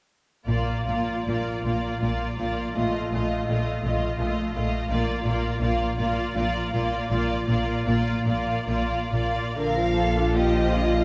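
In three with a rubato feel, this slow, tender romantic movement for string orchestra is a brief fragment cut from a longer piece. All five sections enter together at 0.5 s and play through to 11.0 s, with the first violins carrying a focused, vibrato-rich melody high above a smooth, even second violin line. The violas fill the middle with a lush bowed accompaniment, while the cellos sit in the background and the double basses anchor the low end with a rich, even tone. The harmony rests on a home chord, leans briefly into a dominant-seventh colour over a held bass, then settles back, and a new section begins at 9.6 s. A wet concert hall reverb places the whole ensemble further back in the room, giving the sound a spacious glow.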